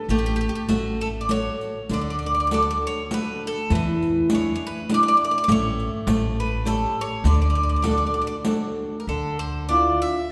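Set in the lingering, reverberant space of a church or concert hall, this brief romantic, wistful Italian folk serenade in D major sways freely at 100 BPM in 3/4, with a bright, double-strung bowl-back mandolin picking the melody up front over fingerpicked nylon-string guitar, a growly, woody pizzicato upright bass, and a riq struck with hard hands for dark jingles until 8.8 seconds, the harmony turning from A6 through D and E7 to A7 before darkening onto Dmadd9 at 9.1 seconds.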